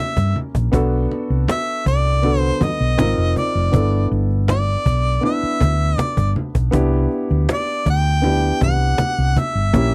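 Cinematic and smooth, this lush 1970s-style soul excerpt moves at an unhurried 80 BPM in a straight 4/4, cut from a longer piece. A clear, present harmonica carries the melody up front, singing in a pop style with a light vibrato, while a concert grand piano with deep bass and short sustain lays down polished accompaniment from the very start. Just after, at 0.2 seconds, a hollow-body short-scale fingered electric bass enters, dark, round and punchy, sitting prominently in the mix, alongside a snappy cajon played with hard hands and snares. Low-tuned congas join at 0.4 seconds, ringing but band-limited with a vintage character, tucked into the background. The harmony drifts from an A#dim7 through Bm7, G#6 and G6 before opening onto a Cmaj9, all captured in a dry, close 1970s-style studio sound with little reverb.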